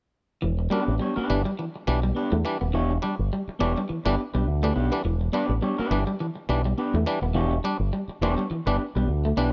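Hypnotic and funky, this short cut from a longer funk piece sits on a single Em7 chord in 4/4, with a lightly swung sixteenth-note feel. A fingered electric bass through an envelope filter enters at 0.4 s, sitting up front with a warm, direct tone. It arrives together with a picked, compressed electric guitar riff at the edge of break-up, its low-register line slightly gritty. At 0.7 s a clean, fingered electric guitar joins in accompaniment, dark and scooped, higher in range. A stringy, percussive clav through a combo amp adds bright, twangy stabs, also placed up front. The sound is dry and close, like a 1970s studio recording, and runs to 9.5 s.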